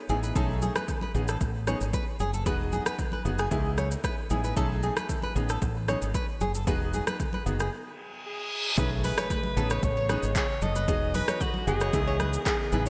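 A boxy, clear baby grand piano with analog chorus opens this smooth, mellow afrobeats excerpt at 114 BPM, joined almost at once by a fingerpicked nylon-string guitar riff with delay and audible finger squeak, a round, dark fretless bass placed up front, and a punchy, overdriven deep house kit of kick, metallic hats, handclaps, rim click and shaker with gated reverb, while very quiet, thin-skinned congas enter at 0.4 seconds. Over lush extended chords, a break at 7.7 seconds leads into an electronic reverse cymbal and impact, and a breathy alto saxophone solo with vibrato and delay arrives at 8.3 seconds. A hollow, flute-like pad with a slow attack and chorus enters in the background from 9.1 seconds, all within a bright 1980s-style digital production and a lush hall reverb.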